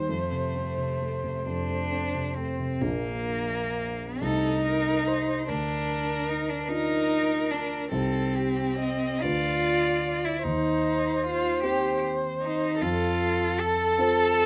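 A dark-toned violin, a rich, close cello and a mellow concert grand with deep bass begin together in this serene, lyrical slow movement for piano trio, a passage cut from a longer piece and shaped with free rubato in 6/8. The violin carries the melody with vibrato, soft attacks and expressive portamento, while the cello's smooth, even second line sits up front beside the piano's accompaniment. A moderate studio reverb surrounds the trio, and at 2.8 seconds the music moves into a new section that closes on an F chord at 12.8 seconds.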